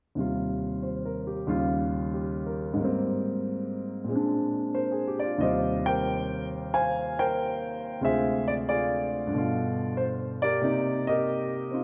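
A warm, polished grand piano sits up front, playing swinging, playful solo jazz with lush extended chords that ring out in a wet concert-hall reverb with a softened top end, shifting toward minor harmony from 8.0 seconds in this brief passage cut from a longer piece.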